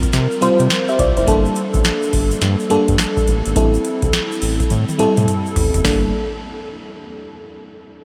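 Punchy and confident, this short new jack swing cut in G dorian moves at 105 BPM with a swung sixteenth-note feel. An up-front, lush FM electric piano layered with a soft pad carries the chords through a chorus effect, while a round, dark analog bass anchors the low end. A booming analog drum machine with a deep kick, crisp snare and metallic hats plays a fill from 4.7 to 5.8 seconds, a grainy tube shaker sits in the background, and a huge ambient reverb soaks the mix in a dreamy haze.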